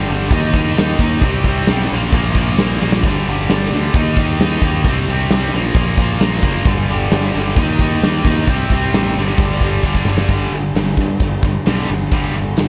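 Powerful and energetic, this hard rock cut drives in straight 4/4 as a tight, double-tracked distorted guitar riff hammers through power chords over a growling, overdriven fingered electric bass, while a huge arena drum kit with a boomy kick, bright cymbals and a pumping hall sound throws in fills at 2.8 and 9.8 seconds before the music shifts into a new section at 10.3 seconds, the mix sitting in light small-room reverb.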